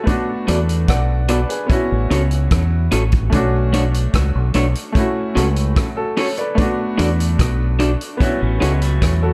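A clear, short-sustained grand piano with tape echo opens this bittersweet, smooth lovers rock reggae excerpt in B minor at 74 BPM, joined by a vintage drum kit with a punchy kick, hi-hat and rim click, a deep, round dub fingered bass sitting up front, slightly broken-up guitar stabs through a small old amp with tape echo, and, from 8.2 seconds, a quieter lo-fi guitar playing arpeggios, all moving through chords like E9sus4, A6 and Bm9 in a dark, lightly reverberant small-room production.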